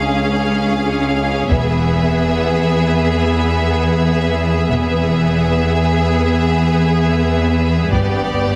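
A heroic, adventurous passage of cinematic orchestral film score opens on lush bowed strings: a focused violin section carries the melody over an intense, distant second violin line, smooth violas and an up-front cello section. At 1.5 seconds a background double bass section and a very quiet taiko ensemble struck with heavy sticks join as the harmony moves from C# to E, and the build-up reaches G at 7.9 seconds, when the taiko returns. The scoring-stage reverb is wet, the sound is heavily compressed in a radio style, and the music is cut from a longer piece.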